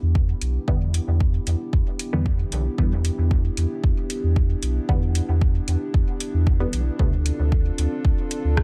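A dark analog pad of detuned square and sawtooth tones opens this cavernous dub techno excerpt at 114 BPM in E phrygian, sustaining Em7 chords with chorus and sidechain pumping above a smooth, clean sine sub bass that sits up front and pumps along with it. A tape-warm electronic kick enters at 0.2 s, followed closely by a soft vintage rhythm box with metallic hats and rim clicks, and at 0.7 s a muted, filtered sawtooth chord stab arrives, coloured by phaser and dub echo. The echo-heavy digital ambience gives the straight 4/4 pulse a moody, deep space, and the harmony shifts to Dm7 at 7.0 s.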